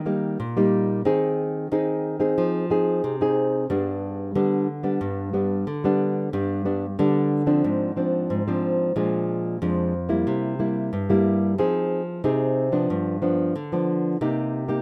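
Samba at 91 BPM in a lively, nostalgic mood: a short excerpt cut from a longer piece, where a solo nylon-string guitar with an up-front, classical, thumb-plucked tone moves from Eb through Fm7, G, Bb7 and C7 before settling on Cm7 at 14.2 seconds, all in a rough home demo mix with light reverb and small room ambience.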